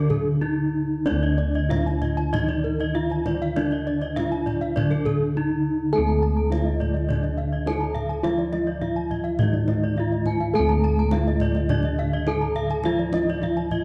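Bronze metallophones and up-front, round, beating bossed gongs open this brilliant, ceremonial Balinese gamelan excerpt in D pelog at 93-104 BPM, with a smooth, dark, horn-mallet melody over a mellow, padded-mallet accompaniment in the background, two layers of shimmering arpeggios (one boxy, the other close and dry), and distant kendang struck with hard hands entering at 0.1 s, all set in a concert-hall reverb with a break from 0.1 to 1.1 s before the music moves into a new section at 5.9 s.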